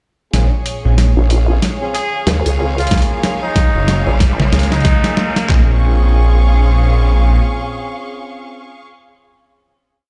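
A swirling, thick detuned saw bass with phaser and tube saturation drives this funky, gritty glitch hop piece in Bb minor at 93 BPM with a swung 16th-note feel, chopping out phrases while a nasal, chorused wobble bass answers it with modulated phrases of changing wobble speed. A pitched-down, tape-warm boom bap kit plays a swung, edited beat of closed hi-hat and snare, joined at 2.9 seconds by a broken pattern of thumpy kick, floor tom and handclaps, as an electronic riser builds in the background toward the final chord at 5.5 seconds. Mellow jazz horn stabs with tape echo and a lush, bowed symphonic string section, both pumping with sidechain, carry the Bbm7 and Gbmaj7 chords through to the end, while a distant, roomy trumpet adds short answering phrases inside a big, bare-room reverb.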